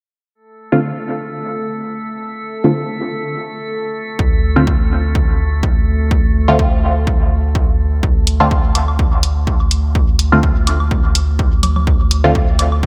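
A muted, detuned dub chord stab with chorus, phaser and dub echo pulses up front through this hypnotic, meditative dub techno excerpt at 125 BPM, entering at 0.7 seconds just after a drifting glassy harmonics texture that sounds from 0.6 to 8.0 seconds. A round analog bass and punchy dry kick follow from 4.2 seconds, then a dry hi-hat and tape-toned woodblock and congas with dub echo, all set in a dreamy church reverb with sidechain pumping on the texture, stabs, bass and percussion.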